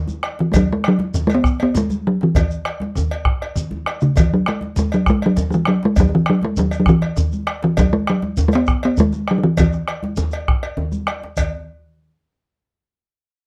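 West African traditional drum ensemble music, powerful and festive at 133 BPM in a straight 12/8, with a resonant, up-front talking drum carrying the melody between C#3 and B3 over a deep, dark bombo, a close and dry djembe, bright background congas, a grainy shekere and a metallic, saturated cowbell, with a drum fill at 3.6 seconds, the talking drum dropping out at 10.1 seconds, and the rest playing on to 11.5 seconds in a dark production with light reverb.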